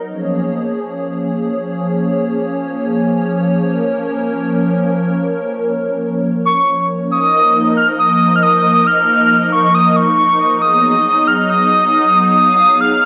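A hollow, flute-like pad opens this melancholic, eerie IDM excerpt in free time, holding slow-blooming chords thickened by ensemble chorus over Bbm7 in B-flat Phrygian. At 6.5 seconds a warbling, nostalgic lead enters high above with a vintage, detuned tone coloured by chorus, tremolo, vibrato and analog delay, as the harmony moves to Ebsus2 at 7.1 seconds and then Abm7. A wet spring reverb and digital ambience give the echo-heavy mix a haunted, echoing space.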